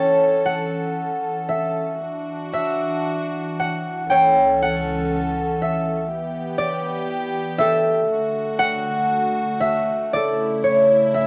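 Tender and wistful, this short excerpt of a Celtic slow air in D major drifts at a rubato 56 to 61 BPM in 4/4, with a fingerpicked concert harp carrying a ringing, up-front solo from 0.0 to 11.3 seconds. Beneath it, a dark chamber string section holds bowed, sustained chords with a nasal, reedy gut-string tone and a smooth top, moving from A through Dadd9, A/C#, Em and D back to A. The sound is dry and close, with light reverb in a 1970s-style studio.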